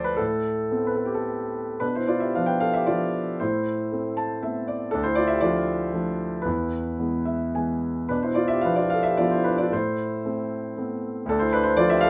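A warm concert grand piano sits up front in light reverb, its deep bass giving weight to this brief classical passage cut from a longer piece. The mood is brooding and bittersweet, a lyrical solo in A minor that moves in 3/4 with a rubato feel, the tempo drifting between 108 and 121 BPM. The piano alone carries the whole twelve seconds, ranging from D2 up to A5. After a short opening, the music turns at 1.8 seconds into a longer second section, and the harmony circles through Amadd9, Bdim, Dm and E before settling back on Amadd9 and Dm. Brief fills from the piano at 3.9 and 7.0 seconds color the phrases as the chords shift beneath the melody.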